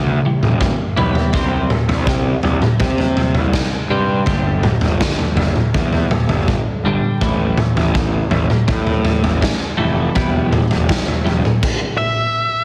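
Quiet-loud alternative rock in A minor at 82 BPM, this brooding, cathartic passage is cut from a longer piece. A raw garage drum kit plays a fill in the first 1.3 seconds, its punchy kick, medium-tuned snare, toms and crash sitting up front with a dark, rolled-off top and the feel of a stone room. Beside it, a fuzz-picked electric bass growls, overdriven and forward, while a twelve-string electric guitar plays twangy, clean arpeggios in the background, bathed in lush chorus. The harmony moves from Em through C5, G5 and A5 before returning to Em, and the guitar and bass drop out just before 12.0 seconds. At that point an octave-fuzz lead guitar plays a brief, distorted E5 that lasts until 12.6 seconds. A large studio reverb with some small-room ambience surrounds the parts, and the whole is heavily compressed into a dense, radio-style sound.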